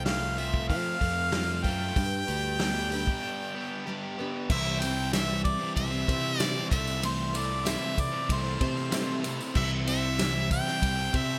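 Hopeful and open-road in feel, this folk rock and heartland rock fragment sets a clear, lightly vibrato harmonica up front with digital delay over a full-bodied dreadnought acoustic guitar in lush chorus, a double-tracked overdriven garage guitar riff, fingered electric bass and a vintage drum kit with a tight kick and gated reverb, while a jingly tambourine joins in the background at 4.8 s after a break at 3.2 s, set in a bright 1980s-style digital production with plate reverb.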